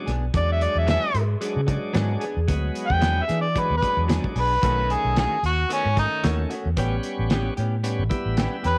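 Straight-eighth soul blues at 112 BPM in 4/4, this short excerpt from a longer piece has a laid-back, rollicking feel with a light swing on the sixteenths. An overdriven harmonica carries the melody up front from 0.4 seconds, its mellow tone marked by light vibrato and scooped notes in a vintage jazz style. Underneath, a bright, shouting tonewheel organ plays accompaniment through a slow rotary speaker with light overdrive, while a clean, direct-recorded electric guitar adds picked, compressed stabs with subtle chorus. A dark, foam-muted fingered bass sits round and prominent against a cloth-damped drum kit of hi-hat, tight kick and fat snare, whose muffled, gritty sound has a rolled-off top. Briefly, between 1.1 and 2.5 seconds, a slightly broken-up slide guitar adds a second line in the background. The harmony moves from E9 to B9 at 4.6 seconds and A9 at 6.8 seconds, all set in a light studio reverb.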